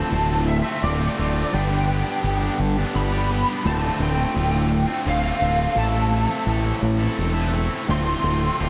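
A growling fingered electric bass sits up front, its overdriven tone warm and direct, anchoring this melancholic, cinematic post-rock fragment in D dorian at 85 BPM in a straight 3/4. A bright, double-tracked distorted guitar picks out a riff beside it, while a dark, lo-fi lead guitar through a small cranked amp carries the melody high above, colored by overdrive, ensemble chorus and analog delay. The dreamy mix is soaked in plate reverb as the chords move from Dm7 through G and Am before returning to Dm7 at 7.9 seconds.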